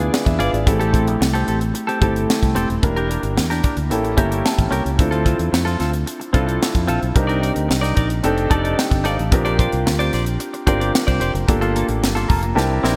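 From the first beat, a tight funk drum kit with a high-tuned snare and gated reverb drives this upbeat, urban slice of polished 1980s jazz-funk pop at 111 BPM. Alongside it come an up-front fingered electric bass, a clean, compressed semi-hollow guitar riff with subtle chorus, and an intimate grand piano whose action noise is audible. The piano accompanies through rich extended chords such as E7b9, Cm9 and Bb69, adding fills at 3.9, 8.2 and 12.0 seconds, while the drums slip in a brief fill at the very end, all within bright 1980s-style digital production and a small-room sheen.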